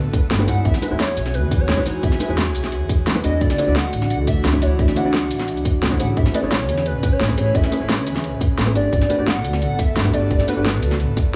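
A hollow, clarinet-like synth lead with vibrato, chorus, tape colour and delay carries the melody over an uplifting, warm liquid drum and bass groove at 174 BPM in A major, where a dark, clean hollow-body jazz guitar with delay plays accompaniment, a woody pizzicato upright bass holds the low end, a punchy electronic kick and a pop kit with fat snare, hi-hat and shaker drive the beat, and a breathy, chorused pad sustains maj9 chords softly in the background of a small room.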